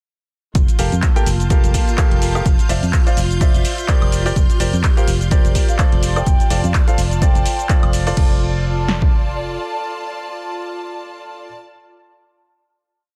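A punchy analog drum machine drives this euphoric, uplifting piano house piece at 126 BPM, with a four-on-the-floor kick, snare backbeat, swung sixteenths on hi-hat, and cabasa, woodblock, claps and crash, while a round, foam-muted fingered bass plays a syncopated riff in F major. A clear, woody upright piano carries dotted-rhythm chords with audible action noise and dub echo, set against a shimmering vintage string machine and rich bowed studio strings, all three pumping to the sidechain through Gm9/F, Dm9/F, Bb69/F and F6. A mellow, hollow flute adds short vibrato phrases from 5.7 s. After the drop ends at 8.2 s, the bass, kick and snare carry on briefly while the piano and studio strings sustain the final chord, all in a dense, dry, heavily limited master.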